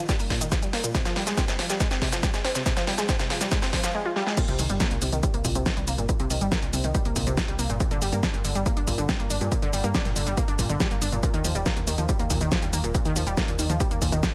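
Bittersweet and euphoric, this uplifting trance excerpt in C minor at 140 BPM opens with a build-up in which a lush, detuned, wave-folded unison pluck plays arpeggios through a filter sweep and delay while a layered big-room drum kit with a huge snare, hi-hat, shaker and crash cymbal runs a drum fill over a punchy, tape-warm electronic kick, before the drop at 4.4 seconds brings in a round, dark FM bass with tube saturation, with the pluck, kit and bass pumping under sidechain in a light digital reverb.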